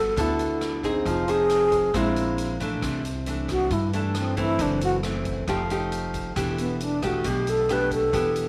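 Bossa nova in E minor at 136 BPM, this smooth, wistful passage is cut from a longer piece and moves in a straight 4/4 feel. A breathy alto flute carries the melody as a solo throughout, its tone expressive, with vibrato and tongued notes. Beneath it, an up-front nylon-string guitar with fresh strings is fingerpicked in a classical manner, while a woody pizzicato upright bass anchors the low end. A swinging big-band drum kit joins at 0.2 seconds, sitting back in the mix with hi-hat, rim click and a punchy kick that carries a natural big-room sound. The harmony drifts through rich chords such as Gmaj9, F#m7b5 and F9 before settling on Em7, and light small-room reverb gives the whole recording a gentle sense of space.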